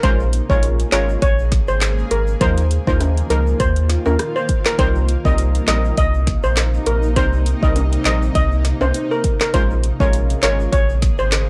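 A dry, gritty recording with little reverb carries this tough, bouncy dancehall excerpt in C phrygian at 101 BPM, its 16ths lightly swung over Bbm7, Ebsus2 and Cm7 chords. Up front, a shimmering steel pan struck with hard rubber sticks carries the melody through analog delay until 11.3 seconds, while a deep, full sub bass with octave anchors the low end and an electronic afro-pop kit supplies a deep kick, woody snare, metallic hats, rim clicks and handclaps. Punchy, detuned sawtooth brass stabs with chorus fill in until 10.7 seconds, a cloudy granular pad pumps beneath in its own reverb, and a band-limited tube shaker and timbales sit bright in the background.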